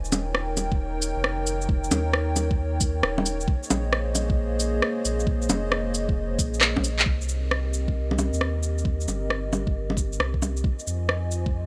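A dry, close mix carries this wistful, rainy future garage excerpt at 134 BPM in C phrygian, its 16ths swung. A dark, detuned analog pad with chorus sustains chords from Eb7 through Bbm11, Cm7 and Fm7, pumping with sidechain, as does a round, sine-like sub bass beneath it. Up front sit electronic shaker, bongos, cabasa, rim click and handclaps, joined at 0.7 s by a layered, knocking, tape-warm kick, with a drum fill at 6.6 s leading into the second section.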